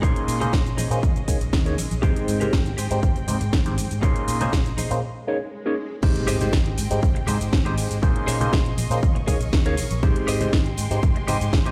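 A funky, feel-good filtered disco house groove at 120 BPM in Ab major opens with a punchy, up-front electronic kick, a house kit with cracking snare and metallic hats, soft-handed tambourine and congas in the background, growly fingered electric bass, a barky, overdriven tine electric piano through phaser, a clean, direct-recorded electric guitar riff with subtle chorus, and intimate sul tasto chamber violins holding sustained chords, the bass, keys, guitar and strings all pumping under sidechain behind a low-pass filter, while a background swell and impact from 5.2 to 8.0 seconds carry a short break into the drop at 6.0 seconds, the whole cut ringing through a stone room on a big sound system.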